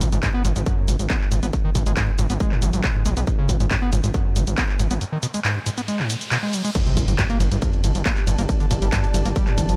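Hypnotic, industrial peak-time techno in this driving excerpt pairs a distorted, up-front kick and a layered electronic kit of crash, ride, shaker, handclaps and warm sidechain-pumped hats with a squelchy, resonant overdriven acid bass riff carrying distortion and digital delay over a gritty, saturated sawtooth synth bass, while a very quiet riser and impact mark a break from 5.0 seconds before the drop at 6.8 seconds, where an ethereal, mellow pad with chorus, tremolo and reverb drifts in from 7.3 seconds.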